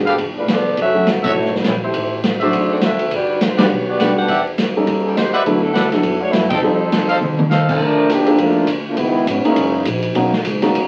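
Big band swing at 205 BPM in 4/4, this joyful, energetic jazz excerpt is cut from a longer piece and sounds like a very old 78 rpm record, vinyl crackle and all, set in a small, wet room. A mellow saxophone section with light vibrato and a smooth top carries the melody up front, while a bright trumpet section jabs in with stabs and the band hits accents at 1.2, 3.6 and 6.5 seconds. Underneath, a warm baby grand piano comps through chords such as G9, F#m7, Gmaj7 and Eb7#11, and a woody, thumpy pizzicato upright bass anchors the low end. The open jazz drum kit sits at a distance with dark cymbals, a boomy kick and a medium-tuned snare, and it plays a fill at 7.2 seconds. At 7.8 seconds the clear trombone section, soft in attack and the most present voice here, takes a solo over shifting harmony from Bbmaj7 through Dbm9 and Gb13 to Bmaj7.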